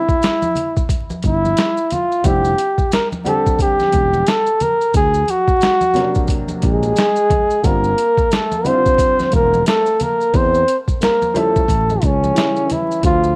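This mellow, smoky jazz-hop excerpt sounds as if it's playing off worn, warbling cassette tape, with vinyl crackle, a drifting pitch and a light studio reverb. A breathy flugelhorn carries the melody up front with vibrato and scooped notes. Beneath it, a gritty, pitched-down boom bap kit with a compressed, thumpy kick, medium-tuned snare and hi-hat sits forward in a swung 4/4 groove, while quiet maracas and congas add acoustic small-room colour. A growly, punchy fretless electric bass enters at 1.2 seconds, and a woody, slightly detuned upright piano with a vintage character joins at 2.2 seconds, accompanying a harmony that moves from rootless C and Fsus2 chords through Daug7 and Gm7 toward A7. At 6.6 seconds a distant, whispered trombone comes in as a roomy, intimate second line in the background, set behind the flugelhorn.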